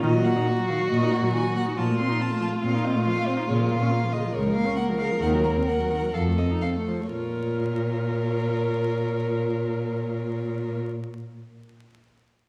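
In a rubato 4/4 that slows between 2.6 and 7.1 seconds, this stormy, restless classical-period string quartet passage, cut from a longer movement, sets an intimate first violin melody with airy bowing and light vibrato over a smooth, even second violin line, a warm viola accompaniment sliding with expressive portamento, and a rich, up-front cello bass, all heard from further back in a reverberant recital hall through a veil of vinyl crackle.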